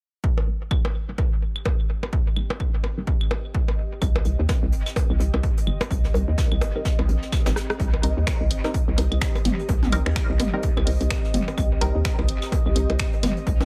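A dry, punchy analog kick drives this sparse, quirky minimal techno excerpt at 127 BPM in C minor, swung on the sixteenths, with electronic blips, claves and toms trailing dub echo from 0.4 seconds while a muted, gritty filtered chord stab on Cm7 and an ethereal pad fading in under chorus, phaser and sidechain pumping fill the echo-heavy space. At 4.0 seconds a hollow, bouncy FM bass enters alongside a soft brush kit of high-passed hi-hat and snare. A drum fill at 7.6 seconds brings in an analog drum machine with finger snaps, hi-hat and rim click.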